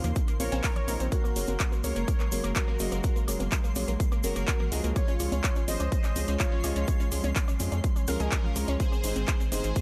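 A round, deep analog bass, a big-room kit with handclaps and metallic hats, background congas and woodblock, and a grainy egg shaker play from the very start of this euphoric, uplifting progressive house excerpt at 125 BPM in Db major, and a punchy, up-front electronic kick enters at 0.2 seconds to drive them. Felt-muted upright piano stabs with audible action noise, an analog pluck arpeggio with a moving filter sweep and delay, and an airy, breathy pad carrying 12-bit sampler grit all pump against the kick over chords moving from Bbmadd9 through Gbadd9 and Db to Ab. From 0.4 seconds a smooth, full-bodied supersaw melody and a very quiet, pure FM bell line with phaser float beneath a twinkling granular shimmer, all in a dry, close sound.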